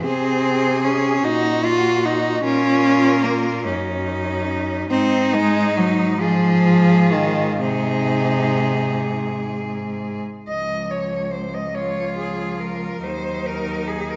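A moderate scoring-stage reverb surrounds this recording, and its sound stays soft at the very top. It is a tender, serene passage for a cello ensemble, taken from a longer classical piece in 6/8 with a rubato feel. Four bowed cellos, each a single player with vibrato, play throughout the 14.2 seconds. The melody sits in the upper register with a focused, rich tone that comes from a distance, while a second line beneath it sounds intense and silky on top. The accompaniment cello is the most prominent part: close, up front, smooth and even. The bass cello supports the ensemble with a clear, distant voice, and the harmony moves through gentle inversions before a new section opens at 10.5 seconds.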